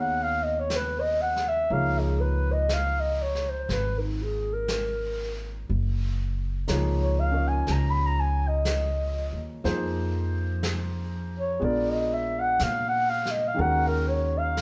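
A slow, swung 4/4 at 61 BPM sets a smoky, melancholic jazz ballad, cut from a longer piece, in which a woody, thumpy pizzicato upright bass sits up front and a distant brush kit on snare and hi-hat enters at 0.7 s with a rolled-off top. Over a polished, present grand piano moving through Abm7, Dbadd9, Gbmaj7, Fm7, Bb7b9 and Ebm7, a dark, breathy clarinet solos throughout with subtone, vibrato, soft attacks and scooped notes, intimate and whispered yet close. The band plays live together in a moderate stone room whose reverb lends the whole a soft, lingering glow.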